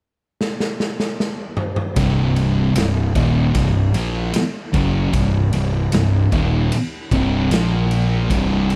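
A raw garage drum kit with a boomy kick and a saturated, gritty sound opens this brooding, hypnotic stoner and doom metal excerpt at 76 BPM in C phrygian with a fill from 0.4 seconds, before two dark, picked fuzz guitars play a riff in the background from 2.0 seconds alongside a growly, overdriven fuzz fingered electric bass up front, the harmony moving from Cm to Bb5 at 7.5 seconds in a dry sound.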